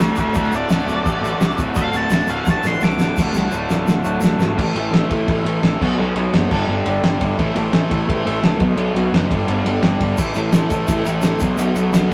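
Garage rock with a swaggering, raw attitude, cut from a longer piece and driven by a straight, fast 4/4 pulse. It opens on a short, dark, fuzzed-out lead guitar solo that plays only until 3.2 seconds, with a drum fill closing it out and another fill carrying through the next brief passage. Underneath throughout, a bright, overdriven, double-tracked rhythm guitar pounds out a picked riff up front, while a round, punchy fuzz bass digs into the low end. The cloth-damped kit sounds thuddy and muffled, with a fat snare, tight kick and dark cymbals, its rolled-off top giving a gritty, lo-fi small-room character. A grainy tube shaker sits quietly in the background, dropping out after 4.5 seconds and returning near the end as the riff cycles through power chords. Light reverb and tube saturation give the whole take the rough feel of a rehearsal-room recording.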